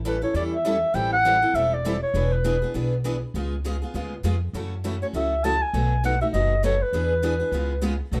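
A swung 4/4 pulse at 201 BPM drives this charming, playful excerpt of acoustic string swing in E mixolydian, where a woody, thumpy pizzicato upright bass on gut strings sits up front beneath two bright, boxy picked steel-string acoustic guitars (one with audible finger squeak, the other with fresh strings) while an intimate, whispered clarinet with scooped notes and light vibrato carries the jazz melody from 0.1 to 2.7 seconds and again from 5.0 seconds, all set in light reverb over changes such as A7, C#7b9 and F#m7.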